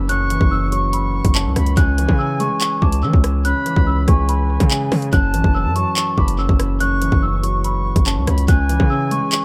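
Drill hip hop with an ominous, dark mood and a half-time feel, opening on a bell-like, delicate celesta melody, filtered and trailed by tape echo, over a mellow, long-sustaining dark grand piano in the low register. A distorted, saturated 808-style bass with a noise layer and an up-front electronic drum kit of hard-clipped kick, hi-hat, handclaps and rim click drive the short excerpt. An airy, distant silver flute adds a vibrato second line from 0.1 seconds, its echo-heavy tone sitting in a dry space.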